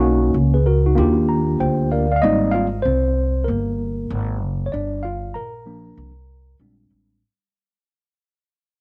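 A mellow, slightly out-of-tune tine electric piano and a woody, thumpy pizzicato upright bass with transformer saturation open this smooth, relaxed swung jazz-hop snippet from a longer piece, the worn piano adding a fill at 1.0 seconds over lush major-ninth chords before taking a solo from 2.2 seconds as the piece fades out through light reverb and the soft grain of a home cassette recording.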